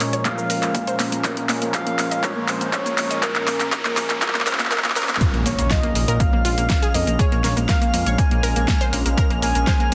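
A straight, steady groove drives this bittersweet progressive house excerpt, built on a punchy, overdriven electronic kick and an up-front deep house kit with a fat snare, handclaps, hi-hat and shaker. Over it, a smooth, vintage-sounding analog pad holds warbling sustained chords with chorus and sidechain pumping. An analog pluck adds bright, round arpeggios with dub echo, and a soft, octave-layered synth lead carries the melody with vibrato, chorus and tape echo. The opening is a build-up with a drum fill, a filter sweep on the arpeggios and a very quiet riser, leading to a drop at 5.2 s where a deep, rumbling detuned saw bass arrives, and from 5.9 s a sparkling granular texture shimmers in the background. The whole mix sits in a lush hall reverb and is dense and heavily limited.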